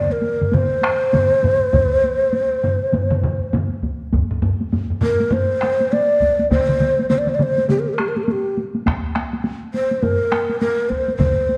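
A breathy, hollow shakuhachi opens this ceremonial, powerful fragment of Japanese traditional music, its chiff-edged, vibrato-laden melody sitting up front as a heavy-sticked solo taiko enters almost at once and two taiko ensembles, one struck with hard sticks and one with a vintage, band-limited tone, join at 0.4 seconds. A third heavy-sticked ensemble arrives at 1.7 seconds, and the swung pulse keeps speeding up as the music moves into a new section at 4.1 seconds. A wet scoring-stage reverb and a worn, warbling cassette-tape pitch drift lend the whole passage an aged, cavernous character.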